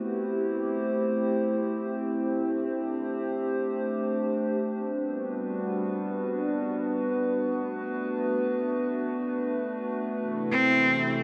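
A warbly, nostalgic tape-like pad with chorus and its own reverb holds slow-blooming chords in A dorian (Am7, D7sus4, Gmaj7, Bm7, then Am) across this free-time, glitchy and cerebral IDM fragment, bathed in a huge ambient reverb, while a clear, focused bowed cello with vibrato and vintage 12-bit sampler grit joins to sound a single up-front note at 10.5 seconds just before the cut at 11.2 seconds.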